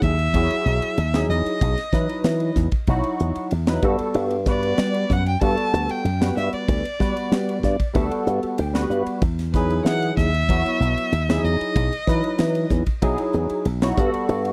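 A dry, close 1970s-style studio sound puts a soaring, funky slice of electric jazz fusion up front, moving at 95 BPM in a straight 4/4 between Emaj9 and Gmaj9 chords. A rich, smooth violin with vibrato carries the melody until 12.7 seconds, over a barky, lightly overdriven tine electric piano with ensemble chorus that plays a fill from 7.3 to 9.2 seconds. Underneath, a growly slap bass through an envelope filter and a crisp, polished drum kit with a high-tuned snare and punchy kick drive the groove.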